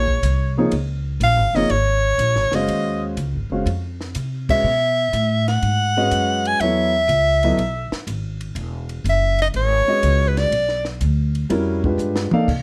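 Searching and intense, this short modal jazz passage, cut from a longer piece, swings with a steady lilt and sits in a light reverb. A clear soprano saxophone carries the melody up front in a close, jazz-style solo voice, coloring its lines with vibrato, breathy subtone and scooped notes before it drops out at 10.9 seconds. Beneath it, the upright bass plays pizzicato with a woody, steel-string tone, while the concert grand piano enters at 0.6 seconds and supplies warm accompaniment with a deep low end. A compact cocktail drum kit sits further back, dark and smooth with a high-tuned snare, a punchy kick and a rolled-off top, moving across ride, hi-hat, crash and toms. The harmony rests on suspended chords that give way to a tense altered dominant near the close, with a band accent at 4.4 seconds and a brief drum fill rounding off the passage.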